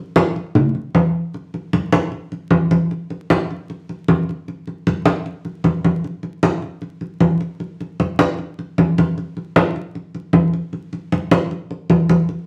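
Low-tuned acoustic congas ring out close and up front, carrying this short jazz cut from its entrance at 0.2 seconds through to the end at 12.5 seconds. The drums are the only part, playing at a brisk 154 BPM in 4/4 with a straight feel. The mood is danceable yet sophisticated, with the hand drums setting both the pulse and the color. A wet studio reverb with a 0.6-second decay surrounds the congas, and a layer of vinyl crackle gives the recording an aged, dusty surface. A brief opening passage gives way at 1.4 seconds to a longer second section that runs to the close of this fragment of a longer piece.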